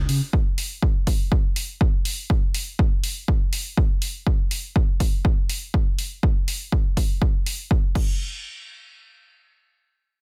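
This filtered disco house excerpt moves at 122 BPM in 4/4, with a 56% swing on the sixteenths that gives it a funky, joyful bounce. A house drum kit comes in at 0.1 seconds, layered and produced, with bright hi-hats and crash cymbal run through overdrive and set up front. Sidechain pumping breathes through its hats, cymbals and percussion, and a studio reverb surrounds the kit. An electronic kick drum joins at 0.3 seconds, punchy and tape-warm with an analog character, also placed up front and touched by studio reverb. Both drum parts stop at 8.1 seconds, and the whole piece sits in a digital ambience with a dense, heavily limited modern master.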